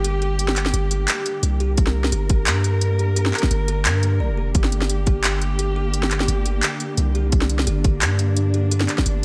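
Sustained cello-section chords, dark and woody with sidechain pumping, open this spacious, dark half-time drum and bass fragment at 173 BPM in G minor alongside airy kalimba arpeggios through tape echo, a deep sine-like 808-style bass and an up-front industrial kit of clanging snare, smooth hats and handclaps, while an overdriven, hard-clipped electronic kick punches in from 1.8 to 5.1 seconds and again from 7.3 seconds, all resting on a single G minor chord in light reverb.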